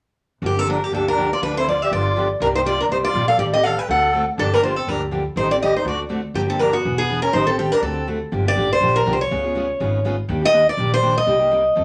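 This excerpt of acoustic string swing in the jazz manouche style races along with a bittersweet, virtuosic mood, its eighth notes carrying a light swing. A picked steel-string guitar with a boxy, parlour character takes the melody, sitting up front and louder than the others, its bright tone marked by audible finger squeak. Beneath it, a second picked guitar with fresh strings and a dreadnought body supplies the accompaniment, while a pizzicato upright bass on gut strings gives a woody, thumpy low end. A musette accordion, reedy and shimmering in its wet tuning, adds a second line from the opening until 8.1 seconds, after which the two guitars and bass carry on alone. The harmony circles through minor-key changes built on Gm7, Am7b5 and D7 before shifting at 8.3 seconds toward C#7 and Ebmaj7, all set in a reverberant studio ambience.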